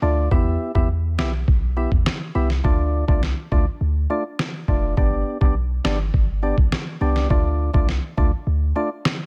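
Dancehall with a sultry, bouncy feel, this short piece is cut from a longer track and rides a straight 4/4 groove over a dry mix with little reverb. A deep, boomy 808-style bass sits up front from the start, its sine tone carrying a touch of noise and a fast, decaying attack that keeps the low end rounded and mellow. Alongside it, a percussive organ stab plays accompaniment in a hollow, nasal voice, its chorus-treated tone shifting subtly as each stab quickly fades. The trip hop sampler-style drum kit comes in at 0.3 seconds, pitched down, compressed and muffled, with a thumpy kick, a medium-tuned snare, rim clicks and finger snaps pushed forward in the mix. The harmony moves from Em to Dm, then G, and back to Dm, with the organ stopping at 8.9 seconds just before the drums finish.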